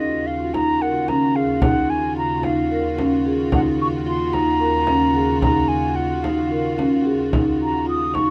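This contemporary chamber piece, cut from a longer work, opens at once with a mellow wooden flute carrying the melody over sustained chords from a warm studio string section and soft-mallet marimba arpeggios, all resting on an Ebm9 chord in Eb minor. It moves in an uneven 7/8 at 221 BPM counted in eighths, with a straight feel that comes across as hypnotic yet urgent. The flute sits up front with an airy, straight tone, a soft attack and rolled-off highs, while the marimba, also up front, sounds round, dark and smooth. The bowed strings play sul tasto with vibrato, intimate and close, and a frame drum joins at 0.5 seconds, deep and large under soft hands, with a compressed, saturated quality. Light reverb and close, detailed microphones give the recording a clear, present sound.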